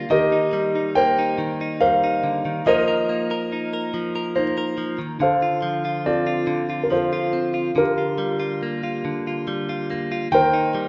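A dark, intimate grand piano carries the melody from the first moment, its action noise audible, while a bright, twangy clean electric guitar, recorded direct and compressed, picks out the accompaniment close beside it. This heartbroken, reflective acoustic folk-pop ballad moves at 70 BPM in 3/4 in G minor, drifting through Cm7/Eb, F7sus4, Dm7 and Gm7/D before returning to Cm7/Eb at 10.3 seconds. The 10.9-second fragment of a longer piece sits in a wet scoring-stage reverb.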